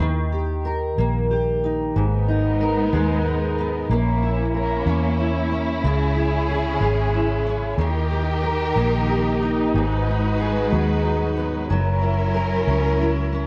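Pop in a straight 6/8, this aching, melancholic fragment is cut from a longer piece. A fingerpicked steel-string dreadnought guitar, dark and double-tracked, sits up front beside a vintage muted fingered electric bass with a round, foam-muted, amped tone. From 2.0 s a warm studio string section joins with bowed sustained chords, expressive vibrato and portamento, and a smooth top. The harmony drifts through minor colours, with a diminished chord and a closing F#7 that leaves the phrase unresolved. A moderate plate reverb lends space, while the worn cassette sound adds a warbling pitch drift that deepens the ache.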